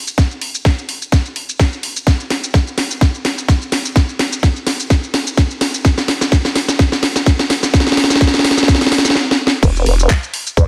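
A moderate digital room reverb gives this short bass house cut a polished, slightly roomy sheen, and the mood is bouncy and gritty at 127 BPM in 4/4 with a light 16th-note swing. A garage drum kit of crash cymbal, handclaps, hi-hat, shaker and snare sits up front from 0.1 seconds, its cracking snare and bright hats layered over a tight electronic kick that joins at 0.2 seconds. The first stretch is a long build-up carried by drum fills, and a final fill plays through a brief stop from 9.2 to 9.6 seconds. At 9.6 seconds the drop lands and a vowel-sweep wobble bass enters between E1 and E2, nasal and resonant through its formant filter, saturated with tube grit, thickened by chorus and pumping with sidechain compression. The clip ends at 10.7 seconds, just as the drop gets going, cut from a longer piece.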